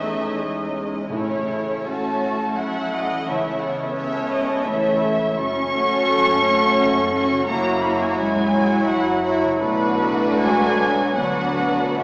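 Serene and warm, this short classical passage moves in a flexible, rubato 3/4 at roughly 69-89 BPM, tuned slightly low to A4 = 435 Hz. Muted violins carry the veiled, dark melody up front with vibrato and a soft attack, while a second violin line, lush and bowed, sits beneath it alongside muted violas, cellos and a faint double bass section, all con sordino. A concert harp rings out arpeggios in the background throughout, and a mellow, vintage-toned French horn section enters at 1.1 s with sustained chords. Timpani with soft mallets add a round touch between 1.1 and 2.2 s. The harmony drifts from C#m/E through A and F#m toward F#7 and Bm7, and the whole ensemble sounds heard from further back in a reverberant scoring stage, with a small-speaker character to the sound.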